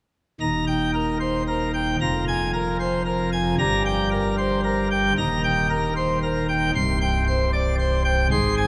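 A wet cathedral reverb with a decay of about 4.9 seconds surrounds this jubilant, majestic classical organ toccata in Eb major, moving at 114 BPM in 3/4. A lone pipe organ on full plenum, its mixtures full and brilliant with an audible chiff in a baroque voicing, sits up front and spans C1 to C6 from 0.4 to 8.7 seconds. The passage is cut from a longer piece.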